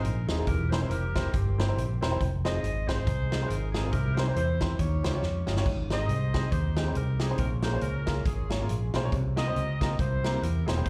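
Driving along at 139 BPM in 4/4 with a swung eighth-note feel, this uptempo gospel excerpt carries a solemn, soulful mood despite its brisk pace. A natural country drum kit sits up front, with a punchy kick, a medium-tuned snare, hi-hat and splash cymbal, and it breaks into a short fill between 5.2 and 5.7 seconds. The fingered electric bass is dark, round and amped, anchoring the low end alongside the kit. A baby grand piano supplies intimate accompaniment with short sustain and audible action noise, while a tight saxophone section carries the melody in a smooth-topped, jazz-style voice with vibrato; both piano and horns carry a slapback echo. The harmony moves through chords such as C7/E, Fm7, Abmaj7 and Bbm7 before resting on C7sus4 and C7, and the whole performance comes across as a live gig heard through the venue's PA with club reverb.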